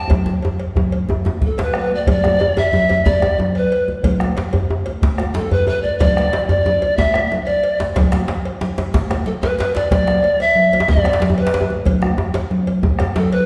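West African traditional drum ensemble music in a straight 12/8, festive and powerful, with a breathy, bright bamboo pan flute carrying the melody up front, its vibrato, soft chiffy attack and reedy edge set against a bombo, congas, cowbell and two djembes. A drum fill opens the excerpt before the main section settles in at 2.1 seconds, and another fill breaks through at 9.4 seconds, with a tight, cracking djembe up front beside ringing, high-tuned, saturated congas, while a round bombo, a deep djembe and a metallic cowbell sit in the background. The whole ensemble sounds heard from further back in a reverberant recital hall, with some lossy compression artefacts, and the passage is cut from a longer piece.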